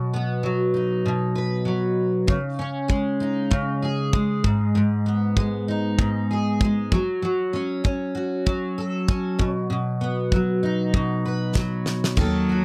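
Acoustic pop at 97 BPM in 4/4 with a light sixteenth-note swing, tender and wistful, cut from a longer piece and opening on a double-tracked, full-bodied dreadnought steel-string guitar, picked up front with audible finger squeak, over chords moving from B through C#sus2, G#m and F#m back to B. A natural country drum kit joins at 2.3 s with a punchy kick, fat snare and dark cymbals in a small-room sound, closing with a fill at 11.6 s. Just at the end, at 12.2 s, a growly, woody pizzicato upright bass and a single nasal, boxy bowed cello with smooth vibrato appear, all set in a dry, close 1970s-style studio sound with light reverb.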